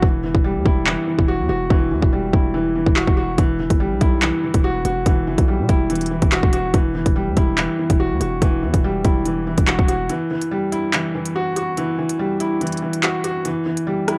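A felt-muted upright piano sounds an E minor add9 chord from the very start of this tense, dark drill excerpt, its soft, mellow tone sitting up front with audible action noise, while a drill kit with a hard-clipped kick, crisp hi-hats, handclaps and rim clicks drives a half-time feel at 143 BPM, its electronic sound colored by cassette tape. Beneath them, a heavy, punchy 808-style bass with a sine body, a noise layer and a fast, decaying attack holds the low end until it drops out at 10.1 seconds, leaving piano and drums to carry on to 14.2 seconds. The whole home cassette recording sits in light small-room reverb.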